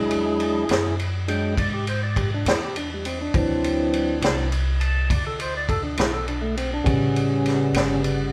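Slow blues in a laid-back, gritty 12/8 feel, where a fat, clean tonewheel organ takes the solo through its slow rotary speaker with sustained chords over E7, D7 and A7, backed by a woody pizzicato upright bass and an up-front vintage drum kit with a punchy kick, high-tuned snare and dark ride cymbal, all playing live together in a large studio room.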